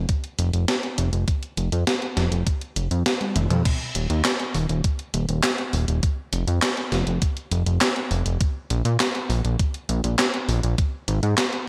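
The recording has a bright 1980s-style digital production with light reverb, and this short cut from a longer synthwave piece carries a moody, nostalgic air at 101 BPM in a straight 4/4. A fat analog bass sits up front, its thick sawtooth, square and triangle tones detuned and touched with ring modulation and a filter sweep, holding sustained notes with a fast attack between Eb1 and Bb2. An electronic kick drum adds a thumpy, sampler-style pulse, re-recorded in a large room and placed up front. Alongside it, a gated 80s digital drum machine supplies crash cymbal, handclaps, hi-hat, toms and a snare soaked in gated reverb, also captured in a large room. A drum fill at 3.2 seconds leads into the second section, which begins at 3.7 seconds and carries the groove to the close.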